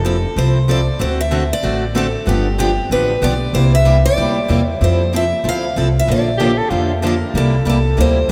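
Drenched in a vast, echoing cathedral reverb, this lively, swinging jazz manouche excerpt at 189 BPM in F major features a bright, concert-toned picked steel-string acoustic guitar melody with audible finger squeak, a boxy parlour-style picked guitar accompaniment, and a woody, thumpy gut-string upright bass played pizzicato up front, while a clear soprano saxophone with scooped subtone notes adds a brief second line from 6.4 to 7.0 seconds.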